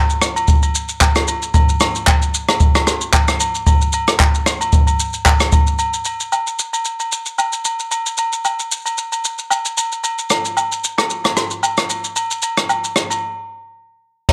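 A dry, gritty hardware recording in a small room frames this soulful, late-night amapiano passage, cut from a longer piece and carried by a lightly swung sixteenth-note feel in 4/4. An airy, polished open jazz drum kit sits up front from 0.1 seconds, with dark cymbals, a boomy kick, handclaps, rim clicks, shaker and crash, while agogo bells and woodblock join at 0.4 seconds, close and acoustic, alongside a tube shaker and group handclap. The piece opens on a drop and moves into a brief break at 13.2 seconds.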